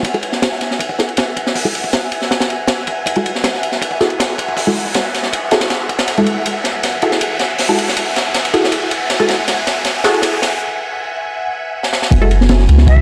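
Frenetic and raw, this drum and bass and jungle excerpt runs at 159 BPM in F# minor, building over a single F#m9 chord as a soft, silky string machine with ensemble chorus and vintage sampler grit holds sustained chords beneath a muted, resonant dub chord stab treated with phaser, cassette tape and dub echo, its filter sweeping through the build-up. A crunchy, saturated breakbeat kit with a punchy kick and high-tuned snare sits up front, playing fills from 6.1 seconds while an electronic noise riser climbs in the background until the break at 10.6 seconds. The round, deep sub bass arrives at 12.1 seconds, and a pure, distant silver concert flute touches a single E5 at the very end, all set in a small, dark room.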